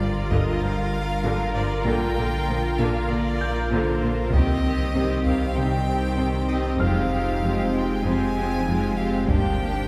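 A focused, close solo violin with digital delay carries the melody in this relentless, futuristic hybrid orchestral and electronic film score at 97 BPM in F dorian, over a rich violin section's second line, an intense viola section in the background, a thick, detuned sawtooth pad with chorus, a smooth, distant cello section and a deep, round sine sub bass, while a worn grand piano with audible action noise adds delayed high texture and compressed, saturated taiko drums strike hard at 0.3, 4.3 and 9.3 s, the chords moving from Gm7 through Bb, Cm and Fmadd9, heard from further back on a reverberant scoring stage.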